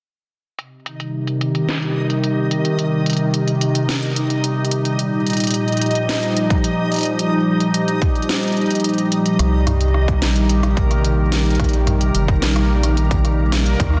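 Glitchy and eerie, this IDM excerpt moves at 109 BPM in C minor, built on a hollow, flute-like pad with a chorus sheen that holds sustained chords shifting from Cm to Ebadd9 and back, while a reversed, granular texture swells dreamily alongside it. An industrial drum kit of clanging snare, smooth filtered hats, rim clicks and toms, wrapped in reverb and delay, carries the rhythm, and a distorted electronic kick enters at 6.5 s, briefly falls away, then returns at 9.4 s alongside a deep, round analog bass that sits up front. The whole mix is soaked in a lush hall reverb and pressed into a dense, heavily limited master.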